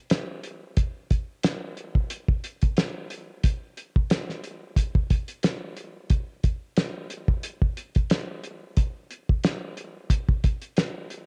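This hip hop excerpt has a reflective, moody feel, carried entirely by a cloth-damped acoustic drum kit with a gentle swing on the sixteenths. The kit plays from 0.1 s to 11.3 s, and its hi-hat, kick and snare sit up front in the mix. The sound is dry and dark, with a fat snare, a tight kick and a rolled-off top end that keeps the hits thuddy and smooth. Vintage 12-bit sampler grit and cassette tape colouring give the drums a worn, lo-fi character. A light reverb and the home cassette recording add a modest sense of space to this short clip, cut from a longer piece.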